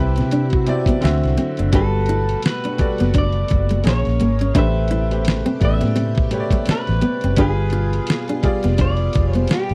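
A relaxed, sensual neo-soul R&B groove at 85 BPM in 4/4 with a swung sixteenth feel in G major, built on a gritty, compressed sampler-style drum kit with thumpy kick and fat snare beside a dark, round, foam-muted electric bass, both up front, while a woody, long-sustaining upright piano comps, a bright fingerpicked nylon-string guitar weaves a second line from 0.2 seconds, a slightly broken-up lo-fi electric guitar carries the melody with slapback echo, and a lush sawtooth string machine with ensemble chorus holds slow-attack chords in the background through a chord sequence from Cmaj7 to G7b9, all in a dry, close 1970s-style studio sound cut from a longer piece.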